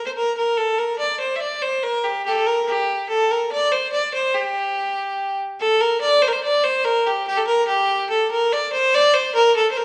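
A lone bowed fiddle carries this short medieval fragment, its clear, earthy tone touched with light vibrato. The single player sits up front yet has a faintly distant quality, moving within a compact range from G4 to E5. Set in G minor at 143 BPM in a straight 3/4, the music feels mysterious and ancient. A phrase is heard and then returns at 5.6 seconds, the fiddle playing alone throughout until the cut at 9.8 seconds. Tuned to A4 = 441 Hz, the fiddle is wrapped in a moderate recital-hall reverb that gives it a sense of air.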